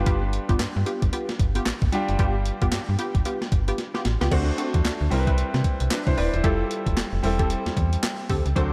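A slap-like FM bass stands out in this upbeat, bouncy new jack swing excerpt, its snappy, metallic attack decaying into a mellow digital tone beneath a 113 BPM groove swung on the sixteenths. A clean 12-bit drum machine enters at 0.1 seconds, sitting up front with a thumpy kick, a medium-tuned snare, handclaps, hi-hat and crash cymbal, its sampler-style hits carrying a tape-warm, small-room character, and a drum fill runs from 3.8 to 4.3 seconds. A clear concert grand piano with deep bass and short sustain plays accompaniment through a slapback echo, while a funky polysynth built from detuned sawtooth and square waves adds punchy, filter-plucked stabs with chorus. The harmony moves from G7 to D7 at 4.3 seconds, then through Cmaj7, Fmaj9 and Am7/E. A very quiet, dark analog pad with a soft attack and chorus appears only in the closing instant, while light reverb and digital ambience surround the mix.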